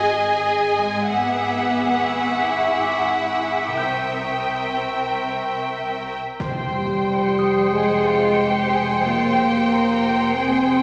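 A tense, eerie suspense film-score fragment at 91 BPM opens with a lush, up-front violin section singing a soft-attack melody over a second violin line, intense vibrato-laden cellos and focused double basses, while a delicate, tinkling music box glints in the background and smooth, even high violins join at 1.1 s; at 6.4 s the harmony turns to F minor as a huge, dark impact strikes and a viola section enters with accompaniment, followed at 6.7 s by a shadowy French horn section holding chords with light vibrato, the whole ensemble placed in a wet scoring-stage reverb.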